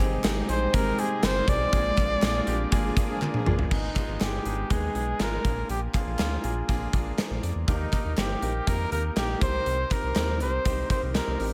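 A clear flugelhorn carries the melody with pop-style vibrato from 0.5 seconds, its line set in delay and shimmer reverb over a clear concert grand piano, a round, deep analog bass and an up-front gated 80s drum kit with bright cymbals and a tight kick. This nostalgic, uplifting 1980s-style pop fragment moves at 121 BPM in 4/4, opening on Abmaj7 with an ethereal, warbling pad that ends at 3.7 seconds, while very quiet, crisp group handclaps add texture. A band accent from 1.7 seconds closes with a drum fill, and brassy, fat analog synth brass stabs with chorus sound briefly from 2.8 seconds before the harmony turns through Abm, Bb7, Eb and Cm7.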